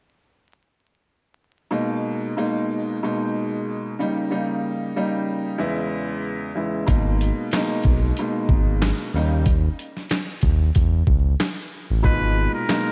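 A relaxed 93 BPM groove in 4/4, with a lazy swing on the sixteenths, sets this moody, reflective boom-bap hip-hop piece in G# harmonic minor. An upright piano opens at 1.7 seconds, playing intimate, woody chords with long sustain and audible action noise. Filtering and a cassette tape colour give it a vintage feel as it cycles through G#madd9, D#7 and C#m7/E. At 6.9 seconds a gritty, compressed, pitched-down sampler-style kit arrives with a thumpy kick, a medium-tuned snare and hi-hats, alongside a smooth, mellow sawtooth-and-triangle synth bass with a fast attack and sustained notes. Just before the close, a trumpet with a straight mute enters at 12.1 seconds for a brief jazz-style solo, sounding bright and nasal with vibrato, filtered and trailed by tape echo. Vinyl crackle, light reverb and a small room ambience wrap the mix in a dusty, warm intimacy, and the passage is cut from a longer piece.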